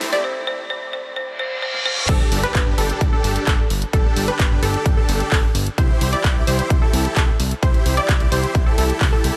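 An emotional, powerful festival progressive house passage opens on a filtered build-up, where a woody, hard-mallet folk marimba melody sits over a clear grand piano, a lush detuned unison pluck arpeggio, a dense compressed supersaw riff with vibrato, a big-room dance kit fill with toms and a huge snare, and a very quiet riser and reverse cymbal. At 2.1 s the drop lands with an impact as a fat, evolving analog bass and a punchy, up-front electronic kick enter, while the piano and marimba fall away. The sidechain-pumped pluck, supersaw and bass carry the drop through its chord changes until the cut, with crash, claps and hi-hat in the kit and tape echo colouring the pluck and supersaw.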